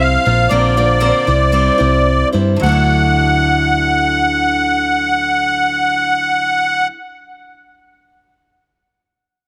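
Folk rock with a heartland rock lean, this brief excerpt has a warm, jangly mood in a straight 4/4, easing as it slows through its opening 2.6 seconds over Bbadd9 and C before arriving on Dadd9. A reedy, shimmering musette accordion carries the melody up front, while a boxy picked steel-string acoustic guitar supplies the accompaniment. A round, punchy hollow-body electric bass anchors the low end, all set in light reverb with a sense of studio ambience.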